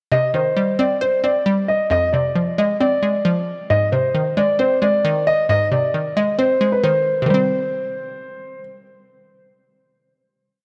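A half-time 4/4 pulse at 134 BPM drives this short, eerie and hard-hitting hip hop piece in C minor, moving through Cm, Fm and Ab before settling on a final Cm chord at 7.3 seconds. A dark, mellow baby grand piano plays a smooth, looping melody up front, repeated like a sample, while a hollow, detuned square-wave pluck with chorus bounces through a rising and falling eighth-note arpeggio and carries on alone after the piano stops at 8.6 seconds. A lush hall reverb and the worn, warbling pitch drift of old cassette tape give the whole recording a vintage, haunted glow.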